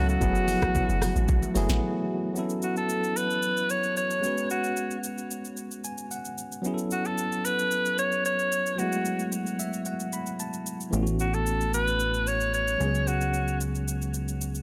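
Amapiano in a hypnotic, soulful mood, cut from a longer piece, opening on a drop where a round log drum bass, a moody ambient pad and very quiet congas join an electronic drum kit with a deep kick and sharp snare, before a brief break at 1.8 seconds. A breathy alto saxophone with vibrato carries the melody through a digital delay, while a bell-like, barky tine electric piano accompanies up front and adds fills midway. A punchy, funky analog bass with a filter sweep joins at 10.9 seconds, and the mix sits in light reverb.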